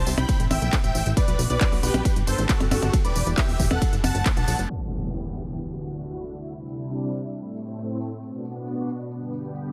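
A huge, detuned supersaw lead carries the melody through the opening drop of this euphoric, emotional uplifting trance piece in E minor at 136 BPM, riding over a punchy, wave-folded analog bass, a heavy electronic kick and a layered techno kit of handclaps, smooth hats, ride, tambourine and percussion blips, while a silky, chorused string pad sustains chords throughout until, by 4.7 s, the lead, bass and kick have fallen away, an up-front impact hits, and a filter sweep runs to the end as the pad and kit play on.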